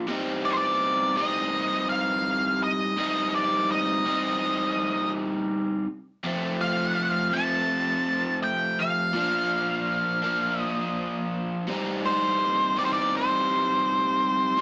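A bright, scooped overdriven electric guitar opens this short rock cut with a picked riff in its low and middle register, double-tracked and placed up front. Half a second in, a dark octave-fuzz lead guitar enters with a distorted, picked melody high above it, also sitting up front and slightly louder than the riff. The mood is trippy and mysterious, carried by a straight feel as the harmony moves from Cm to F at 6.2 seconds, then to Bb and back to Cm. Both guitars play through to the end of the 14.6-second passage. The sound is a rough rehearsal-room recording, with tube saturation and a wet small-room reverb.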